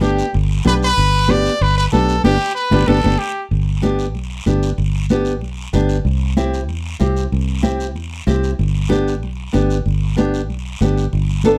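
A straight, danceable cumbia groove in 4/4 drives this joyful Latin piece, where a brilliant, punchy solo trumpet with light vibrato carries the melody up front until 3.4 seconds, with a band accent from 2.2 seconds, while a fingerpicked nylon-string guitar with fresh strings, a round, foam-muted fingered electric bass, damped, soft-handed congas set in the background and a raspy guiro continue through to 11.6 seconds under light reverb.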